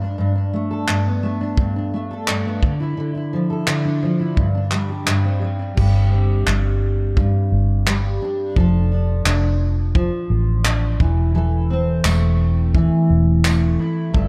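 A fingerpicked steel-string acoustic guitar opens this sunny, heartfelt acoustic pop excerpt at 86 BPM, its full-bodied, double-tracked dreadnought tone sitting up front over chords like Gadd9 and Dmadd9, with a natural country drum kit of punchy kick, crash cymbal and handclaps joining at 0.9 seconds. A round, foam-muted vintage electric bass enters at 5.8 seconds, and a jingly, distant tambourine appears very quietly from 12.0 seconds. The dark production is wrapped in small room reverb.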